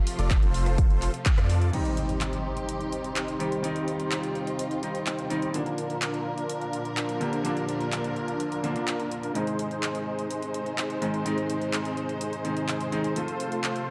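Festival progressive house in C minor at 126 BPM, this euphoric, emotional passage is cut from a longer piece and opens on a drop where a punchy, up-front electronic kick and a deep, saturated sine sub bass drive the first moments before both fall away by 1.7 s. Holding it together throughout are lush, bowed studio strings sustaining chords under sidechain pumping, and a big-room dance kit of crash, handclaps, hi-hat and rim click with an overdriven edge. On top, a huge, thick supersaw riff of detuned sawtooth unison with a sub octave pumps through a low-pass filter and digital delay, sitting forward in the mix. At 1.7 s an electronic impact hits as a brilliant concert grand piano enters with pumping accompaniment and its own delay, carrying the harmony from C minor through Bb and Ab before landing on F. Light reverb and digital ambience give the production a dark, warm finish.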